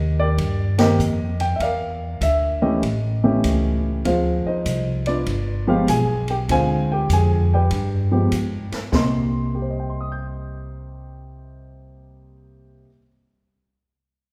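A roomy recital-hall reverb surrounds this moody, smoky jazz piano trio excerpt in C minor, swinging at 98 BPM in 4/4, with a band accent landing between 0.7 and 1.0 seconds. A dark, mellow grand piano carries the melody up front with a short sustain, over a woody, thumpy pizzicato upright bass on gut strings, while an acoustic drum kit with dark cymbals, a medium-tuned snare, a boomy kick, hi-hat and ride sits further back from 0.4 to 9.1 seconds. The harmony moves from a rootless Cm7 through E7(b5) and A7 into Dm7b5 and G7b9, returns to Dm7b5, then passes through G(b9) before settling back on Cm7 at 8.9 seconds.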